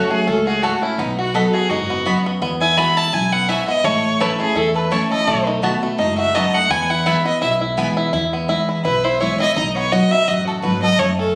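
Captured on a phone in the room with moderate studio reverb, this joyful, lively bluegrass cut swings at 168 BPM in E major, as an up-front, nasal fiddle with light vibrato carries the melody over full-bodied picked acoustic guitar with audible finger squeak, twangy fingerpicked banjo arpeggios, a thumpy pizzicato upright bass from 0.3 seconds, and woody, double-strung mandolin stabs that punctuate the groove from 0.6 to 7.9 seconds.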